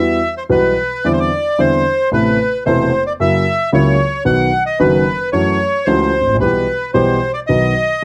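Close, detailed microphones and a light reverb give this brief, melancholic and dramatic tango fragment in E minor an up-front sound, tuned to A4 = 445 Hz and moving at 112 BPM in 4/4 with a rubato feel. A reedy bandoneon with a boxy, small-room character carries the melody across the full 8 seconds, while a dark grand piano accompanies in a mellow, intimate, smooth, vintage voice, its action noise audible, before it stops at 7.7 s. The harmony passes from Emadd9 through Amadd9 and F#7 to B, closing on Em/B and a final B.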